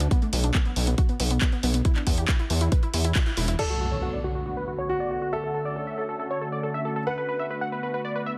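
A dense, heavily limited modern master with light reverb carries this euphoric, soaring uplifting trance cut from a longer piece, moving in straight 4/4 at 138 BPM in B minor. For the first 3.6 seconds a punchy, up-front layered kick, a tape-warm analog drum machine with hi-hat, handclaps and crash, and a gritty, saturated synth bass with sidechain pumping drive beneath detuned, warbling pluck arpeggios that move through a filter sweep with digital delay. A band accent lands at 3.2 seconds, and at 3.6 seconds an electronic impact opens the second part, where a bright supersaw stab melody sweeps through its filter over Bm7 and Dmaj7 chords, a concert grand piano with deep bass adds a second line, and a thick, airy pad with chorus and phaser sustains the harmony.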